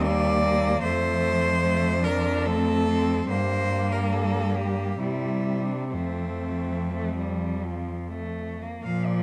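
Serene and lyrical, this short classical excerpt for cello ensemble moves in a rubato 3/4 at 60-76 BPM, with a rich, smooth bowed cello singing the up-front melody over a focused, more distant second cello line, a dark background cello adding expressive accompaniment with portamento, and an even, close cello bass, all with vibrato, captured by close, detailed microphones in light reverb as the harmony passes through Eb, F, Gm and C before settling on F.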